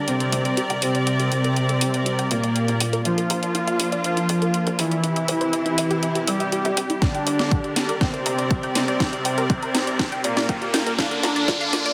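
Cinematic and hypnotic, this melodic techno build-up in G dorian moves at 121 BPM in a straight 4/4, tuned slightly flat, and is cut from a longer piece. A rich, biting symphonic string section holds close, bowed chords with light vibrato through Gm, Bb and C, while a tight, detuned sequenced synth plays mellow arpeggios in the background with chorus and delay, its filter sweeping across the passage. Up front, a smooth, soft-attack supersaw carries the melody through a low-pass filter and dub echo, also under a filter sweep, and the strings, arpeggio and supersaw all pump with sidechain. A layered techno drum kit with an overdriven, cracking snare and hi-hat drives from the start, a very quiet, plucky sequencer bass enters at 0.3 seconds, and a punchy, overdriven electronic kick joins at 7.0 seconds with a drum fill. An electronic riser creeps in at 9.2 seconds, and the whole sits in a lush hall reverb under a dense, heavily limited modern master.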